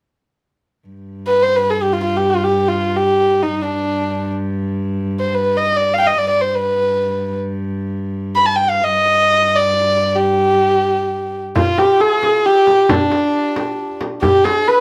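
Set in a wet studio reverb, this excerpt of a festive, passionate Persian modal ensemble piece moves in free time in dastgah homayun on G, tuned to A4 = 438 Hz. A dark, reedy cello holds a bowed gut-string drone on G2 from 0.9 seconds, while the intimate, up-front kamancheh enters at 1.3 seconds with an airy, vibrato-laden melody ranging from D4 to B5, gliding between notes with soft attacks. At 11.6 seconds the cello stops and a mellow, shimmering hammered santur takes up a second line in the background, joined by a deep tombak struck with hard hands and a small, bright frame drum played with soft hands.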